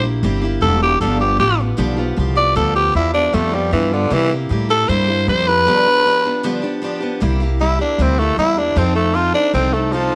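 A light reverb gives this short, rowdy rockabilly clip a lively, close sound, with the growling tenor saxophone and the upright bass both sitting up front. The saxophone carries the melody from the start, its tone raspy, breathy and punchy with a light vibrato, and it ranges from D3 up to D5 in a pop-style voice. Beneath it, the picked steel-string acoustic guitar supplies bright accompaniment with the sparkle of fresh strings and an audible finger squeak. The pizzicato upright bass adds a woody, thumpy, dark low end that drives the rollicking straight feel. The harmony moves between C7 and G7 before the saxophone breaks into a gritty solo at 7.2 s, with the chords turning to F7 at 8.8 s, and the clip stops mid-flow at 10.2 s.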